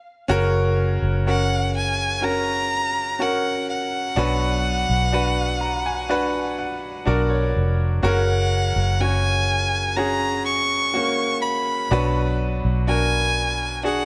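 A rich, focused violin carries the melody from 1.3 s, its bowed line played by a single player with vibrato and a slightly boxy edge, sitting up front in the mix. Beneath it, a bright, brilliant grand piano provides natural-sounding accompaniment from 0.3 s and steps forward with a fill between 5.1 and 8.0 s. A vintage fingered electric bass, foam-muted and round with a dark, amped tone, anchors the low end throughout. This tender, heartfelt pop ballad moves at a slow 62 BPM in straight 4/4 in F# major, alternating between F# and B minor chords. Light reverb and a small room ambience give the piece an intimate feel, and it is cut from a longer work.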